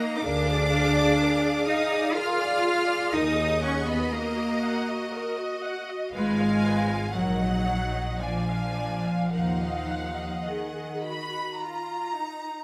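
A slow, solemn string-orchestra passage opens with all sections but the double basses sounding together, taken from a longer romantic movement and moving in a flexible, rubato triple metre with a melancholic cast. A smooth, closely heard violin section carries the melody high in its range while a second, focused violin line sits alongside it, both bowed with vibrato. The violas fill in the accompaniment with an intense, lush tone, and the cellos, clear and up front with light vibrato, anchor the bass alongside double basses that enter at 0.2 s with a smooth, even depth. The harmony leans on dominant-seventh and diminished colours that keep returning to the minor tonic, heightening the mournful gravity. A moderate recital-hall reverb gives the ensemble a natural, spacious glow. The double basses fall away at 10.3 s, the cellos and second violins at 11.6 s, and the melody violins and violas close the fragment at 12.6 s.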